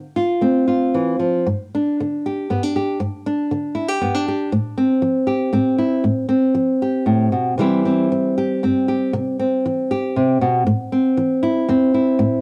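A fingerpicked nylon-string guitar plays alone and up front throughout, with a classical touch and an acoustic tone spanning E2 to G4, opening on Dm7 before moving through G5, F/A, C and Am. This haunting, melancholic solo folk piece sits in 3/4 at around 118 BPM, played with a loose, rubato feel. The guitar carries a cassette tape character, framed by a wet small-room reverb that surrounds this home recording, cut from a longer piece.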